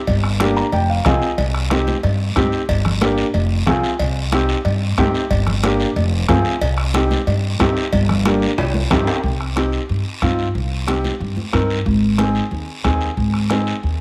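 A studio sound with light reverb frames this fiery, passionate cumbia in C minor, a 14-second cut at a brisk 183 BPM in straight 4/4. Up front, a woody pizzicato upright bass on steel strings and a dark, mellow upright piano with audible action noise carry the cycling Gm, Fm and Cm chords, the piano opening with a short fill at 0.4 seconds. Beneath them sit a soft-beater bombo, ringing congas in the background and a raspy, close guiro, while a distant cowbell and timbales ring out until a drum fill hands over to the second section at 9.2 seconds, where the harmony settles on Cm before moving to Ab at 11.9 seconds.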